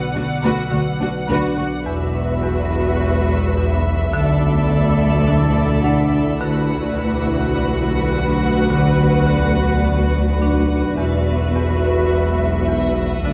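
A slow, straight 4/4 pulse at 53 BPM carries this tense, mysterious suspense film-score cue in B minor, where a veiled, con sordino studio violin section sings the melody over a second muted symphonic violin line, rich violas, and dark, lush cellos and double basses, while a woody marimba riff, a detuned, chorused analog drone on B1, a reversed, granular swelling texture with its own reverb, a delicate, slightly out-of-tune music box that stops at 9.2 seconds, and high muted violins that drop out at 10.4 seconds sit together in a moderate scoring-stage reverb.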